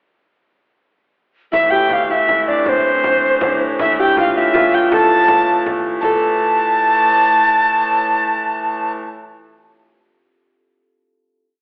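A straight 6/8 pulse at 108 BPM, pushing faster from 1.5 s, drives this short, ancient-sounding medieval dance in A minor, where an airy, up-front soprano recorder with chiff and vibrato leads an ornamented modal melody, a ringing fingerpicked Celtic harp doubles the same line with its own ornaments, a nasal, reedy hurdy-gurdy holds a low drone, and a deep frame drum keeps an evenly spread pattern until 6.2 s, all heard through a reverberant hall with a telephone-like tone before settling on a final chord.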